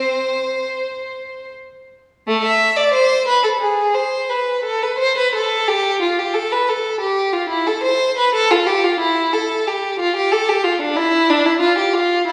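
Flowing and dance-like, this classical excerpt is a baroque-style suite movement for a single unaccompanied violin in 4/4, its beats pulled unevenly by a free, rubato feel. The violin plays solo throughout, from 0.0 to 12.3 s, moving between A3 and E5. Its tone is rich and expressive, colored by vibrato and portamento as the bowed line sings out. The instrument sits up front yet carries a faintly distant quality, set in the wet reverb of a church or concert hall. A brief opening phrase gives way at 2.3 s to a longer passage that restates the same material, and the recording ends mid-piece.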